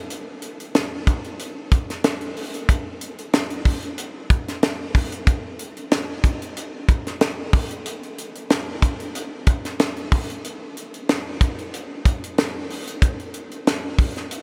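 Breezy and upbeat, this short pop excerpt is built entirely on a tight funk drum kit that plays from 0.1 to 14.4 seconds. The kit sits up front with an acoustic, natural small-room character, its high-tuned snare and tight kick giving the groove a crisp, punchy edge alongside the hi-hat. The 4/4 feel carries a light swing on the sixteenths, lending the beat a relaxed lilt. A moderate, huge ambient reverb with a long 7.4-second tail hangs over the recording, casting a spacious haze around the otherwise close drum sound. Cut from a longer piece, the passage stays within a single section throughout.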